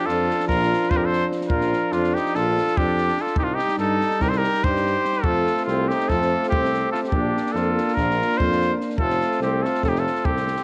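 Counted in a brisk 9/8 at 289 eighth notes per minute with a straight feel, this short Balkan brass band passage races along in F mixolydian with exuberant, virtuosic energy. Up front, a clear cornet carries the melody with light vibrato and classical poise, its line touched by tape echo, while a trumpet plays a second line further back. Two euphoniums fill in the accompaniment behind them, both with light vibrato, one sounding distant and roomy. A tuba with a soft attack and light vibrato enters with the drum kit at 0.1 seconds, supplying a bass colored by transformer saturation. The compact cocktail kit brings a punchy kick and a high-tuned snare with a natural small-room sound. The harmony moves through Bb, Cm and F, then returns to Bb and F by 9.0 seconds, all within light small-room reverb.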